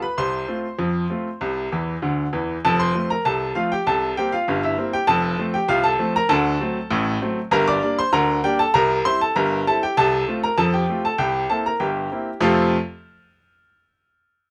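Close, detailed miking and a light reverb put a solo baby grand piano up front in an intimate space, its tone brilliant, with audible action noise and long sustain. This jaunty, lively ragtime excerpt, cut from a longer piece, moves at 98 BPM in a straight 2/4 and sits in F major. The piano ranges from F1 to D6 and works through a cheerful progression that swings between F and C7, with a detour through D7 and Gm before settling back toward the tonic. A short fill at 1.7 seconds adds a bit of flourish early on. A new section arrives at 12.4 seconds on an F chord, and the piano rings out until 12.8 seconds.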